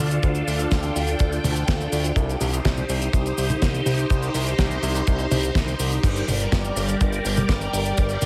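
A heavily compressed, radio-style sound with a small-room ambience frames this nostalgic, danceable italo disco excerpt in G minor at 124 BPM, moving from Dm to Cm before settling on Gm at 6.0 seconds. A swirling, bright string machine with ensemble chorus and phaser sustains chords over a thick, nasal, detuned analog bass that sits up front. A damped 70s kit with a fat snare, dark cymbals, toms and cabasa joins at 0.1 seconds, and a tight, up-front kick drives the groove from 0.2 seconds.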